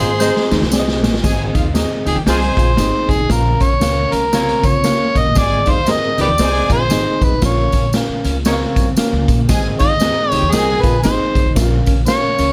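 The groove moves at 116 BPM in 4/4 with a 60% swing on the eighths, an uptempo 1960s-style soul feel in Ab major that sounds uplifting and joyful throughout this short cut from a longer piece. It opens with a band accent and a drum fill on the raw garage kit, whose punchy kick, medium-tuned snare, hi-hat and dark cymbals sit up front in a bright stone room with a rolled-off top. From 1.2 seconds an amplified, overdriven harmonica takes the solo, gritty and up front, with light vibrato, tongue slaps and scooped notes in a jazz style. Beneath it a woody pizzicato upright bass anchors the low end, while a reedy electric piano with fast tremolo, heard through its built-in speakers, fills in the accompaniment and a dark, clean, fingered electric guitar with phaser repeats a riff in the background. A distant, roomy horn section and a lush, bowed studio violin section add second lines until about 11 seconds, and a jingly tambourine rounds out the percussion. 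The harmony alternates between Ab and Bbm, and light reverb ties the mix together.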